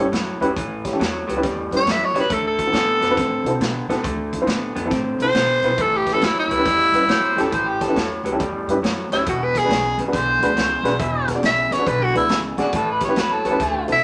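Laid-back and rollicking, this electric blues shuffle excerpt puts a raspy, growling tenor saxophone up front on the melody, over a dark baby grand piano with audible action noise, a slightly broken-up, lo-fi electric guitar riff through a small old amp, a woody, thumpy pizzicato upright bass and a vintage drum kit with a punchy kick and rolled-off top. At 7.1 s an amplified, overdriven harmonica joins as a second solo voice, gritty and up front, with light vibrato, tongue slaps and scooped notes. The band sits in a natural studio room with moderate reverb.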